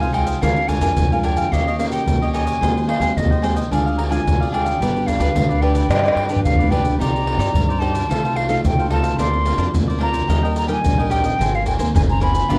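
A hollow, airy silver flute carries the melody with vibrato and a soft attack, sitting close and intimate at the front of this yearning, bittersweet passage of samba and choro, cut from a longer piece. Beneath it, a bright, crisp cavaquinho is picked while a classical nylon-string guitar adds warm fingerpicked accompaniment. An upright bass plucks woody pizzicato notes on steel strings to anchor the harmony. Maracas, pandeiro, surdo and tamborim, played with soft hands and a tight surdo, fill out the groove in a large room, with a drum fill from 5.9 to 7.0 seconds. The whole recording has the worn, warbling character of old cassette tape, with pitch drift and moderate studio reverb.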